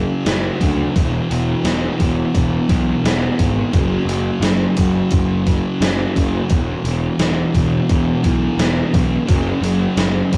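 A double-tracked fuzz guitar riff and a punchy, overdriven picked bass open this dreamy, hazy shoegaze and dream pop fragment, joined at 0.3 seconds by an up-front electronic drum machine with a thumpy kick, hi-hat and gated reverb snare, all captured in a rough rehearsal-room sound with saturation as the chords move between F#5 and E5.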